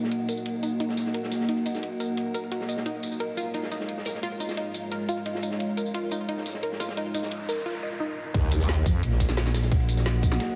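Aggressive and tense, this dark technical drum and bass cut runs at 175 BPM in Eb minor, opening in a dreamy, reverb-soaked space. A deep, moody pad of detuned sawtooth chords with a sub octave and a slow attack sustains from the start, moving from Ebm to Db, while a round, nasal analog pluck spins arpeggios through chorus, phaser and delay under a filter sweep until 8.2 seconds. Underneath, a drum and bass kit with a woody snare, metallic hats and tambourine ticks along, and a gritty, saturated breakbeat kit with dark cymbals sits in the background. A noise sweep runs from 7.4 seconds into the drop at 8.3 seconds, where an impact lands with a tight electronic kick and the chord returns to Ebm. There a wobbling, overdriven growl bass with a formant filter bursts up front, handing over to a thick FM growl bass that snarls low through the final moments.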